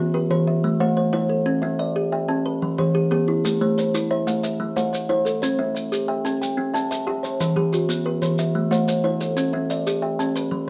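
Hypnotic and warm, this short excerpt of southern African traditional music turns an mbira-style interlocking cycle in 12/8 at 121 BPM, tuned to A equiheptatonic and circling through Am, C and Em. Two kalimbas play arpeggios from the start. One is woody and hollow-boxed, its bright thumbnail plucks ringing dry and up front, while the other gives shorter, solid-board thumb plucks lower in the mix. Grainy, mellow maracas join at 3.5 s, heard in a moderate studio room.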